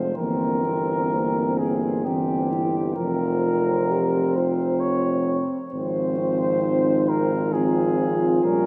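A mellow flugelhorn, with light vibrato, leads this solemn, elegiac brass-band hymn, singing its melody up front yet sounding distant and roomy. Set in F minor at 66 BPM in a rubato 3/4, the short excerpt moves through C7/G, F5 and Fm/Ab chords across its 8.7 seconds. Behind the lead, a French horn section carries a second line in the background, its tone mellow and similarly vibrato-tinged. Close-miked euphonium and trombone supply accompaniment with soft attacks, the euphonium dark and the trombone warm. A clear, vintage-sounding tuba anchors the bass from F1 to Bb1, and the whole ensemble sits in a wet church reverb with a 3.9-second decay.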